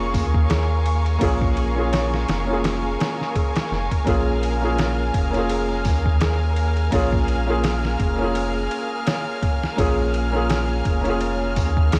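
Swung sixteenths at 84 BPM set a hypnotic, smoky trip hop groove over a Bbm7 chord, where a pitched-down, muffled sampler-style drum kit with a thumpy kick and 12-bit grit enters at 0.1 s alongside a round, up-front dub sub bass, a soft felt-muted upright piano with audible action noise, harmonic tremolo and tape echo, lush bowed strings with vibrato, and an eerie, inharmonic FM synth bell arpeggiating with chorus in the background, all in a dry, gritty hardware sound laced with vinyl crackle.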